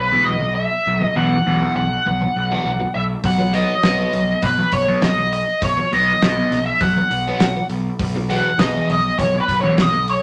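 Kaleidoscopic and hazy, this psychedelic rock excerpt in B major moves at 101 BPM in a straight 4/4, with a bluesy overdriven lead guitar carrying the melody through wah and distortion over a fuzz-drenched picked electric bass held on a low B. A bright, double-tracked fuzz guitar riff colored by phaser churns beneath, and at 3.2 seconds a cloth-damped, thuddy drum kit arrives with a fat snare, tight kick and rolled-off hi-hat as the harmony shifts from Esus2/B to B, later landing on E5/B. Moderate studio reverb lends a gentle glow, while lossy compression artefacts add a faintly smeared edge.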